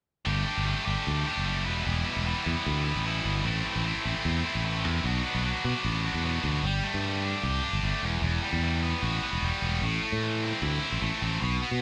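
A heavy, high-gain electric guitar leads this upbeat rock cut, its distorted, picked riff double-tracked and sitting up front in the mix. Underneath, a modern fingered electric bass adds a growly, direct low end with a bright edge. Both parts play together from 0.3 seconds through 11.8 seconds at a driving 151 BPM in a straight 4/4, giving the short cut a jangly, energetic lift in G major. The first half moves through Gsus2, Em, Am and Bm, and at 6.6 seconds a second section returns to Gsus2 before shifting to Emadd9 and Am. The band sounds as if it is playing live in a single room, with a light touch of reverb around it.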